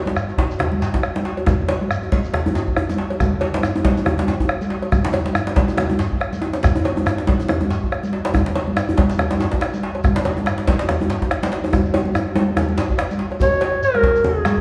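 A growling, raspy clarinet enters at 13.4 seconds for a brief jazz-style solo with scooped notes and light vibrato, capping a driving, earthy West African drum ensemble excerpt in which a deep, dark bombo sits up front beside two rattling djembes, hard-hit bright congas, a grainy shekere and a metallic background cowbell, all gradually speeding up in a swung groove through a drum fill from 11.7 seconds, heard from further back in a reverberant recital hall.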